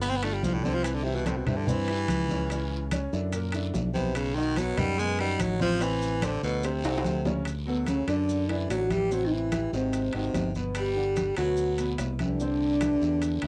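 A cassette home recording in a wet booth ambience captures this lively, sophisticated Afro-Cuban jazz excerpt, where a growling, gritty baritone saxophone solos up front over brilliant, woody upright piano, a dark, round fingered electric bass, close hard-hand congas, ringing metal-shell timbales and background raspy guiro and grainy maracas, until a drum fill at 6.8 s leads into the second section, where a veiled, breathy trombone with bucket mute takes the melody from 7.7 s.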